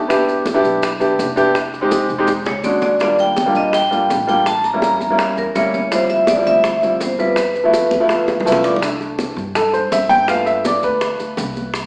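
This lively, danceable Afro-Cuban jazz cut opens with an up-front upright piano, woody and intimate with audible action noise, comping through shifting chords at 165 BPM in a straight 4/4 in C major, as a pizzicato upright bass with steel strings enters alongside it. At 2.5 s a bright, ringing vibraphone struck with medium hard mallets takes the melody, its metallic tone shimmering with a medium motor vibrato until 8.4 s. Beneath them, the bass gives a low, woody pulse, while tight, high-tuned bongos played with hard hands sit close and dry, joined by very quiet, thick-skinned congas and grainy, mellow maracas. Drum fills arrive around the vibraphone's entry and again near its exit, and after a short piano fill the piano takes a solo from 8.8 s over C6 and G7 chords. The band sounds as if playing live in one room, bathed in a large studio reverb yet heard through a small speaker, and this excerpt is cut from a longer piece.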